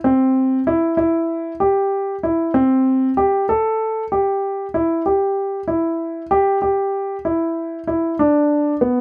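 A lone grand piano opens this brooding progressive instrumental excerpt, its dark tone sitting up front and intimate in the sound. The music moves at 192 BPM counted in eighths across a driving 9/8 metre with a straight feel, centred in A minor. The piano keeps to a compact register from B3 to A4, and its mellow voice carries long sustain, with the audible noise of the instrument's action adding a close, physical presence. At 3.5 seconds the passage moves into a new section that carries through to the cut at 9.0 seconds. A light reverb surrounds the piano, keeping it near and tactile while the odd metre keeps the mood driving and brooding.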